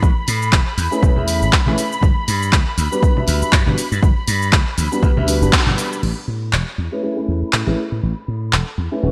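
Sunny and funky, this filtered disco house excerpt at 120 BPM in A major swings over Amaj9 and Gmaj7 chords, with an overdriven electronic kick and a dry analog drum machine of crash, handclaps, hi-hat and shaker up front beside a bright, punchy slap bass, while quiet congas and tambourine sit beneath lush bowed violin chords and a dark, boxy baby grand with phaser entering at 0.9 s, both of which pump through sweeping low-pass filters in a bright 1980s-style digital hall, before a brilliant trumpet section slips in at 8.5 s.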